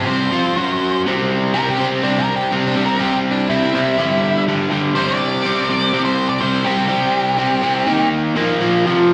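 Swaggering and raw, this rock passage pairs a bright, double-tracked overdriven electric guitar riff, compressed and up front, with a dark, picked octave-fuzz lead guitar carrying the melody, both touched by slapback echo. The lead drops out at 8.1 seconds while the riff guitar carries on to 9.1 seconds, over chords moving through C5, F#5, G5, Eb5 and Bb5. The sound is that of a live gig heard through the venue's PA, with light reverb in a recital-hall space.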